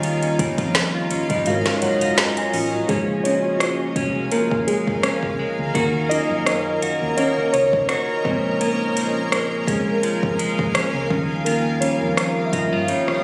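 Contemporary R&B at 84 BPM in Bb minor, moody and late-night with a light 16th-note swing, cut from a longer piece: muted, felt-like synth keys with chorus add a fill from 0.8 s and then solo from 2.9 s over Bbm7 and Ebm7 changes, backed by a blurred granular cloud pad, a clean, compressed electric guitar playing arpeggios through delay, a round, foam-muted vintage fingered electric bass, an up-front smooth R&B drum kit with a woody snare and metallic hats, and a very quiet, inharmonic FM chime that rings only until 3.2 s, all set in light digital ambience with a phone-in-the-room sound.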